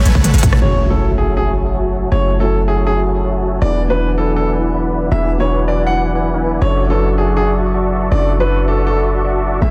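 This future bass excerpt moves in a half-time 4/4 feel at 160 BPM in D lydian, opening with a brief drum fill from a crisp-hatted big-room dance kit with rim click and toms, a punchy kick sitting in the background, and a deep, boomy 808-style bass up front that pumps under sidechain with a huge, detuned supersaw riff through a low-pass filter. At 0.6 s a distant electronic impact lands as a clear concert grand piano enters with the melody, its action noise audible and its tail carried by digital delay, while a soft, felt-muted upright piano adds mellow, intimate accompaniment through dub echo. The mood is euphoric and lush, moving from Amaj7 through F#m7, E7 and Dmaj7/F#, with light reverb and a dense, heavily limited modern master.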